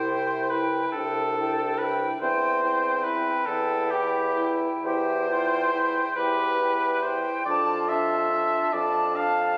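In a rubato 12/8 at a slow 47 dotted-quarter beats per minute, this short cut from a longer classical movement for wind quintet unfolds in C major with a tender, serene mood. The concert flute carries the melody between G5 and A5, airy and expressive with vibrato and tongued notes, though it sits distant in the blend. The oboe's second line, warm with light vibrato, sits up front alongside the clear, soft-attacked bassoon holding the bass. A bright clarinet and a present French horn with light vibrato supply accompaniment from the background. The harmony moves from C to C/E at 2.2 seconds and on to Dm/F at 7.5 seconds, the quintet sounding through a moderate concert hall reverb captured on a phone in the room.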